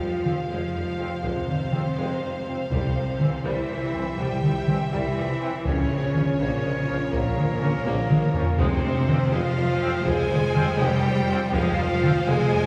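A close taiko ensemble struck with heavy sticks stands at the front of this dramatic, heroic passage of epic orchestral film score in 12/8, cut from a longer piece, with a drum fill at 7.9 seconds. Above it, a warm, smooth violin section carries the lush, bowed melody with vibrato. In the background, a second, richer violin section and a pure, crisp-attacked concert flute share a second line. Clear, focused violas fill out the accompaniment, and mellow, distant French horns hold sustained chords alongside a very quiet, roomy trombone section. The low end rests on bowed cellos, an even double bass section and a very quiet tuba, while timpani with hard mallets and calf heads sound briefly at 2.7 and 8.6 seconds, all set in a wet concert-hall reverb heard from further back in the room.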